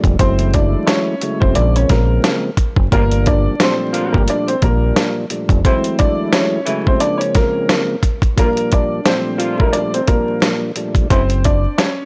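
A dry, gritty hardware sound with vinyl crackle frames this moody, reflective boom-bap hip-hop excerpt, cut from a longer piece and moving at 88 BPM in 4/4 with a swung sixteenth feel in G dorian. Up front, a compressed, sampler-style soul drum kit lays down a thumpy kick, a medium-tuned snare and hi-hat, joined by a dark, round, punchy fingered electric bass with tube saturation that drops out at 5.6 seconds and returns briefly at 11.1 seconds. A mellow tonewheel organ, lightly overdriven and turning through chorus vibrato and a slow rotary speaker, fills in the accompaniment beneath. Carrying the melody from 0.2 seconds, a worn, woody, slightly detuned upright piano has a vintage character and touches of analog delay. From 2.9 seconds, a jazz-style horn section sits in the background with mellow stabs, light vibrato and octave doubling. The harmony cycles through F#m7, Bbm7 and Gm7 before settling on F#m.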